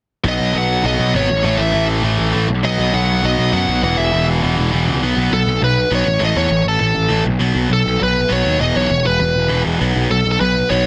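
Energetic and rowdy, this short cut from a longer punk track charges ahead at 201 BPM in a straight 4/4, centered on B mixolydian. A cranked stack guitar with a bright, overdriven edge drives the riff throughout, joined early on by a tight distorted guitar sitting in the background until it drops out at 5.5 seconds. Up front, a growly fuzz bass with a direct, amped bite anchors the low end, while a smooth overdriven lead guitar with a darker tone carries the melody high above. The chords cycle through B, A5 and E5 across two sections, with the second arriving at 5.0 seconds on B5. The sound is dry, with a dense, heavily limited modern master that keeps the energy pressed hard.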